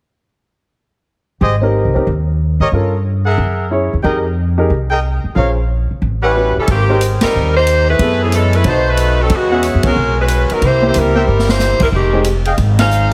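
Smooth-topped trumpet stabs and a woody, thumpy pizzicato upright bass open this joyful, brassy big band swing excerpt at 1.4 s, with a clear baby grand piano comping just after over rich extended chords that start on Abmaj7. A punchy, present saxophone section with light vibrato takes the melody at 6.2 s, and a swinging drum kit with a punchy kick and medium-tuned snare arrives at 6.7 s, driving the 182 BPM groove with band accents and a short drum fill at 11.3 s. Light reverb and a heavily compressed radio sound give the whole excerpt a broadcast character.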